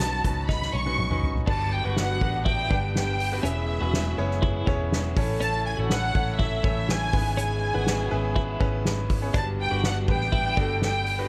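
A lush, expressive violin section carries the melody up front in this uplifting, anthemic piano-driven pop excerpt, over brilliant grand piano, a veiled con sordino string section holding very quiet chords, a twangy, tremolo-laced twelve-string electric guitar riff in the background, a round, foam-muted bass and a distant, roomy soft-mallet drum kit whose fill leads into the entrance of a dark French horn section at 1.5 seconds, all set in a small room with light reverb.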